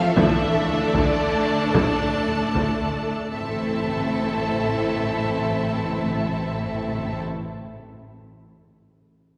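A straight 6/8 pulse at 77 BPM, counted in dotted quarters, drives this heroic, relentless orchestral film-score passage in A minor, cut from a longer piece. Hard-stick taiko drums with a vintage, band-limited sound pound from 0.2 to 3.0 seconds over a D minor chord, then close, dry timpani on A take over at 3.3 seconds as the harmony shifts to A minor. Above them, a distant violin section carries the bowed melody with smooth, even vibrato in the background, while a second violin section adds a soft-attacked, expressive line beneath it. A focused string section sustains rich chords, supported by very quiet violas, a mellow, roomy French horn section, and smooth cellos and woody double basses in the bass. The church reverb bathes the ensemble in a long, wet tail.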